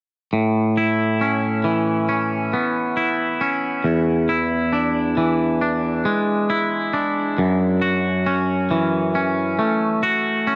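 A dark, warm production bathes this short rock excerpt in a huge ambient reverb with a long 4.4-second tail, giving it a euphoric, hopeful glow. At a slow 68 BPM in A major, a lone twangy electric guitar sits up front, playing clean, compressed, picked arpeggios from 0.3 to 10.6 seconds. Subtle chorus and tape echo colour the guitar as it moves through Aadd9, E7 and F#m7.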